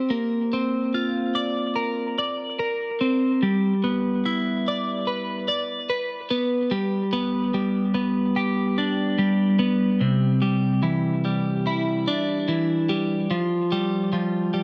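A lush hall reverb with a long 2.5-second tail surrounds a dark, warm production, with a lone twelve-string electric guitar sitting up front in the mix. This short rock piece, cut from a longer work, moves at a slow 73 BPM in a straight 4/4 and carries a euphoric, soaring mood. The guitar is bright, clean and compressed, its picked twelve strings shimmering through a phaser and an analog delay as it spans from C3 to D5. It opens on Bbadd9 and G6 chords before settling into G mixolydian at 6.7 seconds. From there a build-up runs to the end, moving through G, Cadd9 and Fsus2 and steadily lifting the piece.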